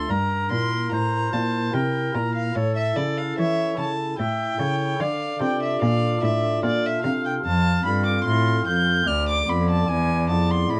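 A dark, nasal, period-style violin carries the melody up front from the first moment, joined at once by a roomy oboe on a second line, a hollow stopped-flute chamber organ with audible chiff and tremulant, and a warm gut-string cello holding the bass. This flowing, introspective baroque-style sonata movement in D minor moves at 74 BPM in 3/4 and is a brief cut from a longer piece, its harmony passing through A, Dm and F before arriving on E. Close, detailed microphones catch the reedy grain of the bowed violin and cello, set in light reverb.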